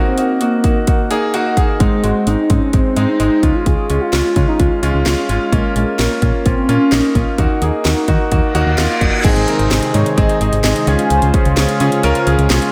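A velvety synth lead carries the melody of this nocturnal, cool synth-pop excerpt, its smooth, full-bodied sawtooth tone coloured by chorus, vibrato and an analog delay before it stops at 11.3 seconds. At 129 BPM in a straight 4/4, a clear concert grand piano sits up front with chords moving from Ebm through Ab, Db and Bbm in Eb dorian, while a house drum kit enters at 0.2 seconds with a punchy kick, cracking snare, metallic hats and crash cymbal. A round, dark FM bass joins at 1.8 seconds, its fast attack giving each note a solid, decaying thump beneath the harmony. A brief electronic reverse cymbal leads into a new section at 9.2 seconds, where a brassy, detuned analog pad with a soft attack and filter swell brings bold sustained chords over the Ab to Dbmaj7 change. A lush hall reverb bathes the mix in a dreamy digital ambience.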